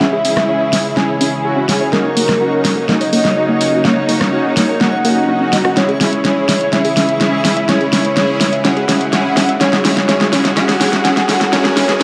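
A straight 4/4 pulse at 125 BPM drives this dreamy, expansive progressive house build-up in C# dorian, with an up-front pop drum kit of fat snare, hats and rim click playing a fill throughout while a round analog bass sits barely audible underneath from 0.2 seconds. A full, octave-layered synth lead carries the melody through chorus, phaser and dub echo over clear, bowed symphonic strings holding sustained chords on C#m, D#m7 and F#sus2. In the background, a lush, punchy unison pluck plays arpeggios and a smooth supersaw adds low-pass-filtered stabs, both with filter sweeps and dub echo, as a very quiet reversed, granular swell hovers on C#5 and a faint riser enters at 8.4 seconds, all in a dark production with a wet recital-hall reverb.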